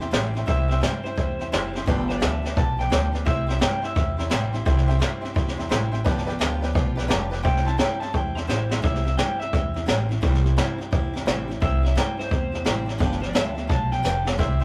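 Upbeat and retro, this short rockabilly cut from a longer piece rolls along with a swung feel over simple C and G7 changes. A jazz brush kit sits up front with a high-tuned snare, a boomy kick and hi-hat, its rolled-off top giving a small-room glow, and it adds a couple of brief fills. The upright bass carries the low end with a woody, growly pizzicato tone. A bright, full-bodied jumbo acoustic guitar picks out steady accompaniment, while a metallic, jangly tack piano plinks in the background before dropping away at 8.8 s. The melody comes from a twangy, slightly broken-up electric guitar through a small old amp, entering at 0.5 s, pausing, then returning at 7.4 s with a lo-fi edge. Light reverb and tube saturation give the whole take the rough character of a rehearsal-room recording.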